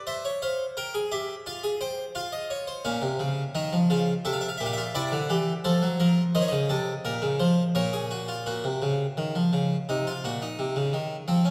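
A close, plucked Flemish-style harpsichord with two sets of strings opens at 0.1 seconds and plays alone through a serious, contemplative baroque-style three-voice fugue in straight 4/4, its full, up-front tone spanning Bb2 to G5 inside a lingering concert-hall reverb as the harmony moves through C7, Fm and Bbm before turning to a new section at 8.5 seconds, the fragment cut from a longer piece and stopping at 11.5 seconds.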